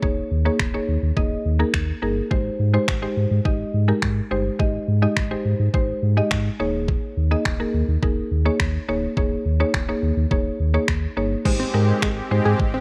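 An upbeat, summery dance-pop excerpt at 105 BPM in Ab major, built on a woody, mallet-like FM synth pluck with chorus, a deep sine sub bass with octave, and a produced R&B drum kit with a knocking, tape-warm kick, finger snaps and crash cymbal, all sitting up front in a dry mix. The bass and pluck pump with sidechain compression as the harmony moves between Eb7sus4 and Abmaj7. At 11.5 seconds a lush, detuned supersaw pad and a punchy sawtooth unison pluck carrying tape-echoed arpeggios join for the closing moments.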